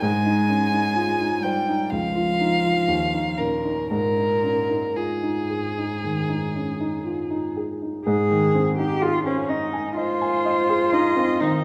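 Rubato in a slow 4/4 at 56-65 BPM, this tender, lyrical excerpt from a romantic piano trio movement in Ab major sets a veiled, con sordino violin melody with vibrato up front, a muted cello second line gliding with portamento from a distance, and a dark, mellow baby grand piano accompaniment, all bathed in the reverb of a recital hall.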